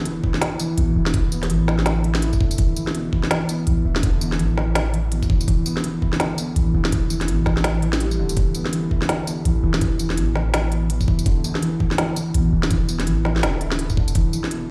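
A swung half-time drum and bass groove drives this spacious, tense fragment, with an organic electronic kit of woody snare, crisp hi-hats and tambourine sitting up front beside a knocking, overdriven electronic kick. Beneath them, a deep 808-style bass holds long sine tones with a fast attack. A felt-muted upright piano plays dark, boxy arpeggios through tape echo, its action noise intimate and audible, and the whole recording sounds as if it were played on a big sound system in a bare room, with a brief break at 8.0 seconds.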